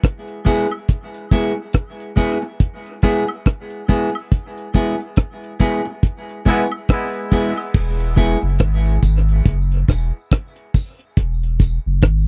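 This dub reggae excerpt opens at 0.0 seconds with a deep, dark reggae drum kit up front, its tight kick, rim click, hi-hat and crash cymbal sounding dry and smooth with a rolled-off top. A clean, picked semi-hollow electric guitar follows almost at once as accompaniment, its hollow-body tone carrying a dub echo. A tambourine and woodblock sit quietly in the background, also touched by dub echo. The groove moves at a slow 70 BPM in 4/4 in E major, with a swung sixteenth-note feel that gives the spacious, hazy mood an unhurried sway. The band accents from 4.3 seconds, and during that accent a clear, vintage horn section enters briefly at 6.5 seconds with light vibrato and echo. At 7.7 seconds a round, sine-like sub bass arrives up front in the second section, warm and sustained with a fast attack, anchoring the low end. The close, 1970s-style studio sound has little reverb, leaving the parts close and present.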